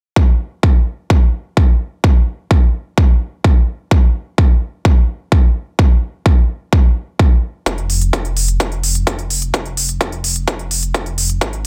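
A punchy, tape-warm electronic kick drum drives this uplifting, triumphant festival progressive house excerpt at 128 BPM in straight 4/4, re-recorded in a large room and held up front. At 7.7 seconds, crisp hi-hats enter alongside a thick, detuned, saturated saw bass pumping under sidechain, and a filter-swept build-up carries the dark, menacing bass through to the cut at 11.7 seconds.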